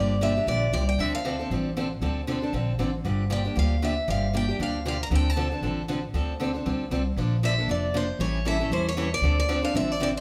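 Swung eighths drive this fiery, bittersweet fragment of jazz manouche, where a bright parlour steel-string guitar picks the melody up front over a boxy archtop guitar's picked accompaniment with audible finger squeak and a woody, dark pizzicato upright bass, the trio heard playing live together in one room with moderate large-studio reverb.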